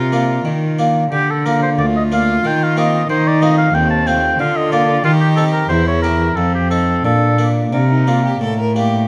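Close, detailed microphones catch every part in a recital hall with moderate reverb of about 1.7 seconds, giving this short cut from a longer baroque-style sonata movement a present yet resonant sound. The music is flowing and dance-like, in 3/4 at 90 BPM with a rubato feel, in B-flat major, tuned slightly high to A4 = 441 Hz. A warm, smooth-topped oboe carries the solo melody up front in a classical style, falling silent at 8.4 seconds. Beneath it, a single bowed violin with light vibrato plays an even second line from a distance. A bright, plucked harpsichord with Flemish character and one set of strings sits mid-forward as accompaniment, while a rich, bowed cello with vibrato anchors the bass prominently. The harmony moves from Bb through Cm7/Eb and F7/Eb, then passes through Edim7 and F7 before settling back on Bb, with the violin, harpsichord and cello sounding together to the end at 9.1 seconds.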